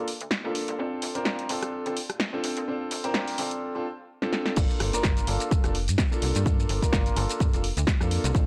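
Sunny and joyful, this filtered disco house cut at 127 BPM swings lightly over a Gm7, with a clear, intimate grand piano treated with phaser and low-pass filtering, a snappy slap-like FM bass with a metallic attack, and a dry analog drum machine of crash, hi-hat, rim click, shaker and snare. All three pump to the sidechain, the drum machine on its hats, cymbals and percussion. The part builds to a drum fill at 4.2 seconds before a tape-warm, layered electronic kick drops in up front at 4.6 seconds, the whole recording gritty with transformer saturation and light reverb.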